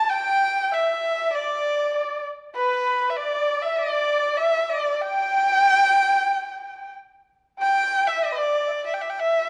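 Two bowed erhus open together in this graceful, pastoral fragment of Chinese chamber music, the clear, focused lead carrying the melody up front with vibrato and portamento while a quieter, rich, nasal, slightly boxy second erhu traces a smooth, even line alongside it with the same sliding, singing inflections, the rubato phrasing shifting into a new section at 7.6 seconds before the fragment breaks off, all set in a dark production with a moderate recital-hall reverb.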